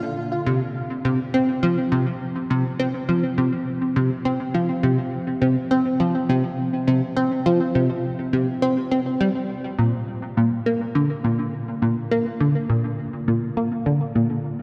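A plucky analog bass plays alone from 0.5 to 14.3 seconds, its punchy, funky sawtooth and pulse-wave notes spanning Bb2 to C4 with a fast attack, a decaying filter pluck and a moving notch, coloured by subtle chorus and tape echo. Though it sits up front, the bass is bathed in a vast cathedral reverb with a 5.5-second tail. This mysterious, hypnotic ambient fragment of a longer piece moves in a straight 4/4 and shifts into a new section at 9.8 seconds.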